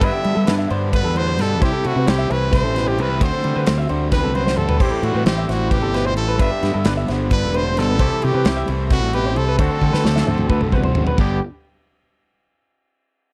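A brilliant, forceful trumpet with vibrato, scooped notes and a slapback echo carries the solo melody through this wistful, bright math rock and midwest emo passage in 7/8. A growly fuzz bass sits up front, while a twangy clean guitar, a dark, lo-fi guitar playing arpeggios through a small old amp, and a double-tracked crunchy overdriven guitar riff stay in the background. An airy, polished studio drum kit with a tight kick rounds out the dry, close 1970s-style room sound, with a fill from 9.8 to 11.2 seconds before the chords arrive on G.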